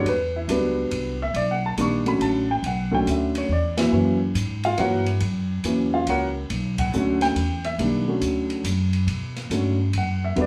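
Smoky and swinging, this short jazz piano trio excerpt moves at 140 BPM in 3/4 with a swung eighth-note feel, set in B minor and tuned slightly sharp at A4 = 444 Hz. A warm, natural-sounding baby grand piano carries the melody up front, ranging from D3 to C#6, while a woody upright bass with steel strings plays pizzicato underneath, also close and present. An open, acoustic drum kit enters at 0.1 s with hi-hat, snare, ride and kick, its airy, polished sound marked by dark cymbals, a medium-tuned snare and a boomy kick, sitting well behind the other two. The harmony moves through Em7, Bm7 and F#7, with the whole band hitting accents at 3.7 and 6.7 seconds before a brief break in the chords. From 9.1 s the piano takes a solo over a B5 chord, and the trio sounds as if it is playing live together in a small room with moderate reverb.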